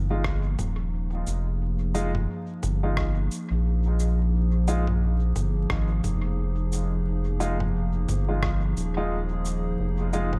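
A round, dark analog bass sits up front in this meditative ambient dub excerpt, holding low on a deep Fm7 for the whole 10.4 seconds at 88 BPM in 4/4 with a swung sixteenth-note feel. Above it, a warbling, nostalgic tape-like pad sustains chords with chorus and its own reverb, its slow attack and long release giving the harmony a hazy glow. A woody upright piano adds polished stabs soaked in dub echo, entering at 0.1 seconds. The drums stay muffled and pitched down: a thumpy electronic kick in the background drops out at 8.6 seconds, while a lo-fi sampler-style kit of rim click, shaker and toms carries on with studio reverb and dub echo. Vinyl crackle hangs over the dry, intimate room, lending the track a dusty, meditative depth.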